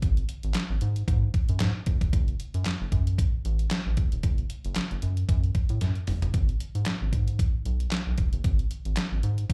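Late-night and funky, this short cut from a longer early-eighties boogie funk piece sets a rubbery, hollow square-wave bass with a resonant filter pluck against a detuned 8-bit drum machine of thumpy kick, medium-tuned snare, handclaps, hi-hat and toms, heard up front through a club PA with a drum fill at 5.8 seconds.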